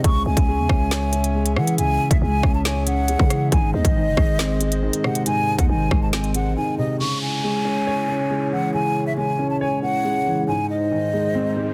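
The drill drum kit sets a half-time feel at 138 BPM in 4/4, with a hard-clipped kick, a woody snare given soft clipping, rim clicks and crisp hats, and it drops out at 6.4 seconds. This cold, dark hip hop passage in C# harmonic minor is cut from a longer piece, and it moves between C#m and G# while a growling, buzzy 808-style bass with a fast attack and decaying notes holds the low end until 6.6 seconds. Up front, a breathy concert flute carries the melody with vibrato and tongued notes, its expressive line treated with delay. Beneath it, a dark, boxy concert grand piano with deep bass plays the accompaniment, and a hollow, detuned pad with a slow attack and chorus sustains chords. After a silent gap from 6.6 to 7.0 seconds, a downlifter and riser enter over the flute, piano and pad, all set in light digital reverb and a dense, heavily limited master.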